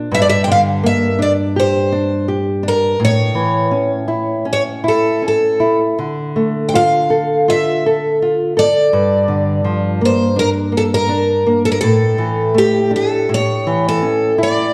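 A bright, shimmering picked twelve-string acoustic guitar carries the melody up front, its octave-doubled notes ringing out over a fingerpicked nylon-string guitar whose small, intimate tone shows an audible finger squeak. This longing, mournful fado-style ballad moves at a rubato 82 BPM in 4/4, drifting through Gm, A, Dmadd9 and Gm7 before turning to Asus4 at 11.8 seconds and settling on A at 13.3 seconds. A dark, warm production and a recital hall's wet reverb wrap the pair in a lingering space, in an excerpt cut from a longer piece.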